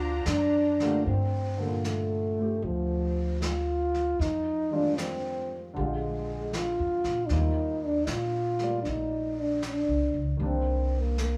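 A breathy, dark trombone carries the melody up front with light vibrato, opening on a brief solo over a D7alt chord before settling into a melancholic, smoky slow swing at 77 BPM in G minor. Beneath it a woody pizzicato upright bass holds the low end, veiled con sordino strings sustain a distant chord only for the first second, vintage brushes on snare and hi-hat enter at 0.3 seconds, and a smooth grand piano with short sustain joins at 0.8 seconds. The chords move through Gm9, Fm7, Bb13, Eb6 and Cm9, all set in the moderate reverb of a recital hall in this fragment of a longer piece.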